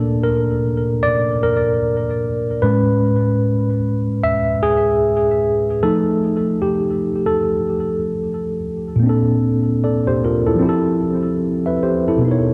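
A worn, slightly out-of-tune tine electric piano plays alone from the start of this mellow, cosy hip hop excerpt at 75 BPM, its 16ths swung. It is coloured by cassette tape, a low-pass filter and delay, and sits up front in a dreamy, lush hall reverb, moving through Bbmaj7, Amaj9 and F7. At 9.0 s the harmony settles into Bb lydian on Bbmaj9 and Fmaj9 until the cut at 12.5 s.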